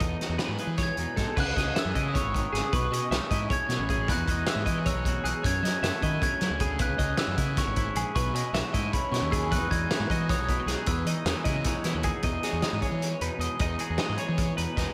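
Racing along at 309 BPM in a straight 7/8, this bright, playful math rock and midwest emo excerpt in E major pairs a twangy clean electric guitar with chorus-shimmered twelve-string arpeggios, a fuzzy overdriven fingered bass and a gritty, punchy loose indie drum kit up front, while a dark, bell-like glockenspiel played with hard plastic mallets carries the melody with slapback and tape echo from 0.8 to 11.6 seconds over chords like Emaj9, C#m7 and B9sus4, all bathed in a lush hall reverb that gives it a big arena sound.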